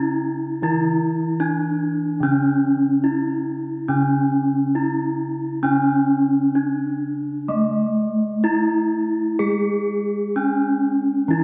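A lush concert-hall reverb with a two-second decay surrounds this short gamelan recording, which is cut from a longer piece and feels hypnotic and stately. Two bronze metallophones play together from 0.0 to 11.4 s in C# pelog, tuned to A4 = 441 Hz, in a straight 4/4 at 63-77 BPM. The melody metallophone sits up front, its ringing metallic tones struck with a wooden mallet, and its paired tuning produces shimmering beats with a vintage, band-limited character. Beneath it, a second metallophone carries the accompaniment in a lower register, its bronze sound dark and smooth. The music moves into a new section at 7.5 s and carries on until the cut at 11.4 s.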